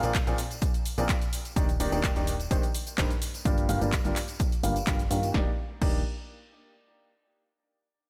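A clear, up-front baby grand piano riff with short sustain, tape echo, low-pass filtering and sidechain pumping leads this joyful, uplifting piano house excerpt at 127 BPM in Eb major, over a plucky, funky analog bass of sawtooth and pulse-wave filter plucks that also pumps, a punchy, layered electronic kick, a house kit of crash cymbal, handclaps, warm hats, shaker and punchy snare, a compressed, saturated tambourine in the background and a barely audible downlifter at 0.9 seconds, while filter sweeps run on both piano and bass until 5.3 seconds across Bb9, Ebmaj7 and Gm7 chords.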